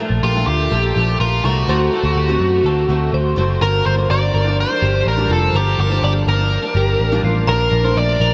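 A round, foam-muted vintage electric bass sits up front in this bittersweet, restless indie pop excerpt in G minor at 124 BPM, with an overdriven, nasal lead guitar through a parked wah carrying the melody, a bright, twangy twelve-string electric guitar playing tremolo-treated arpeggios, a picked steel-string acoustic with analog chorus playing accompaniment over Bbmaj7, D7 and Gm7, and a sparkling glockenspiel with brass mallets ringing through analog delay in the background from 7.5 s, all soaked in a huge, dreamy reverb.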